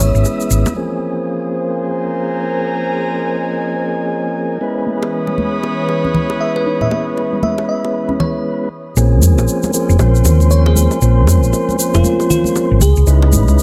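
Deep house at 117 BPM with a 16th-note swing, moody and hypnotic, where a mellow, up-front tonewheel organ plays stabs throughout through overdrive, fast rotary speaker, 12-bit sampler grit and tape echo over Dbm9 and Bbm9 chords. An airy breathy pad adds texture while a warbling, nostalgic tape-like pad holds sustained chords in the background. A soft round pluck adds arpeggios from 4.9 to 8.1 seconds, hard-handed bongos and congas return at 5.0 seconds, and a sparkling bell-like FM electric piano carries the melody with chorus and tape echo. After a brief break, the drop at 9.0 seconds brings in a dark, round hollow-body electric bass and a grainy egg shaker, all in light reverb as a cut from a longer piece.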